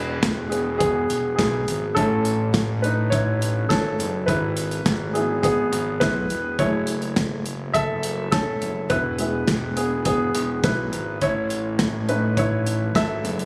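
Piano-driven pop with an uplifting, anthemic mood, this excerpt features a polished, present baby grand piano that carries a solo for its full 13.5 seconds over chords moving from E to A, E/G#, F#m7 and back to E and A. A fat, saturated analog bass with a detuned sawtooth edge and an evolving filter sweep sits up front from the start, and an acoustic studio drum kit with punchy kick, medium-tuned snare and hi-hat joins at 0.2 seconds in a pumping room. The piece sounds as if captured on a phone in the room, washed in club reverb.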